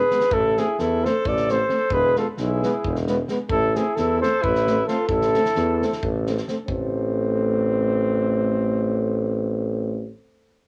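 In a straight 7/8 lilt, this bittersweet, virtuosic Balkan brass band fragment, cut from a longer piece and captured at home on cassette in a lightly reverberant room, puts a dark, soft-attacked cornet melody with a touch of vibrato, plate reverb and tape echo up front, joined by a clear alto saxophone on a second line. A smooth-topped tuba anchors the bass, while a bright, distant trombone and a euphonium sitting in the background supply the accompaniment over Am and E. A small-room acoustic kit with a fat snare and punchy kick plays until 6.9 seconds, and after the cornet and saxophone stop at 6.2 seconds, tuba, trombone and euphonium carry the closing section to 10.1 seconds.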